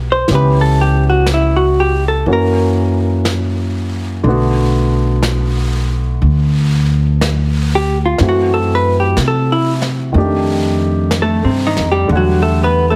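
Heavily compressed and radio-like, with a light reverb, this passage is cut from a longer smoky, intimate jazz ballad in 4/4 with a swung eighth-note feel. A dark, clean electric hollow-body guitar carries the melody up front, picked and compressed, soloing from 0.1 seconds to the end. Beneath it, a woody upright bass played pizzicato on steel strings sits equally forward, while a grand piano comps at a lower level, its natural sound revealing audible action noise. A brush drum kit recorded in a studio room joins at 0.3 seconds, its brushed snare and hi-hat kept low in the blend. The harmony moves through C#m7b5, F#7 and Bm7 before turning to F#m7b5, F13 and Em11.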